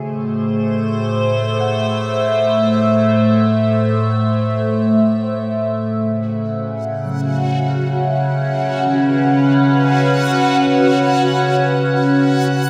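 Bathed in a cavernous cathedral reverb, this luminous, peaceful ambient passage in free time, cut from a longer piece and tuned to A4 = 439 Hz, rests on an up-front evolving wavetable pad whose morphing sustained chords, colored by chorus and phaser, move from Am to C#7sus4 at 5.7 seconds, while very quiet muted felt-like synth keys trace dark, intimate arpeggios with a ring-modulated, noise-flecked edge, and from 7.3 seconds a bright, dreamy backwards swelling texture with granular, detuned shimmer drifts in.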